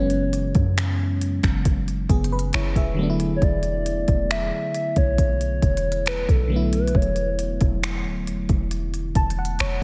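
Sensual and longing, this slow contemporary R&B excerpt pairs a hollow, woody synth lead carrying the melody through chorus and delay until 7.8 s with glassy, bell-like FM electric piano chords under chorus and phaser, a deep, boomy 808-style bass, and an up-front, tape-warm drum kit of soft kick, smooth hi-hat and finger snaps, all in light reverb, as the harmony moves from F#9sus4 to E9sus4 before an electric piano fill closes the excerpt from 8.7 s.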